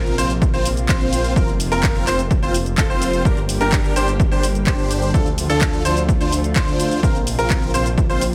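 Powerful and anthemic, this short cut of festival progressive house rides a huge, detuned supersaw riff with a cassette-tape tint and digital delay over a thick saw bass, a lush chorused pad in the background, and bright, worn baby grand arpeggios with audible action noise, all pumping to the sidechain, while a house kit of handclaps, warm hi-hats and shaker enters at 0.1 s and an overdriven, punchy electronic kick sits up front from 0.4 s in a dry mix moving through Bbsus2, Fsus4, Gm and Dm.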